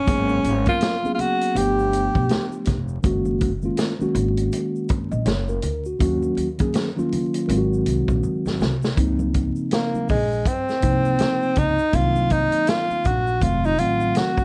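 Vinyl crackle and light reverb give this short cut from a longer jazz-hop piece a warm, smooth sound. At 81 BPM in 4/4 with a swung sixteenth-note feel in Db major, a vintage drum kit sits up front with a punchy kick, a medium-tuned snare, hi-hat and a rolled-off top, joined by a very quiet, close tube shaker and congas. An upright bass played pizzicato on gut strings gives a woody, thumpy low end, while a clean tine electric piano in plate reverb moves through rich chords from Abm11 to Ebm7 and Ab7. A breathy tenor saxophone, intimate and whispered with a soft attack and vibrato, states a brief phrase before falling silent at 2.7 seconds. After a drum fill at 8.2 seconds, the harmony turns to Dbmaj13, Cm7b5 and F7b9, and the saxophone returns at 9.7 seconds for a jazz solo bathed in plate reverb.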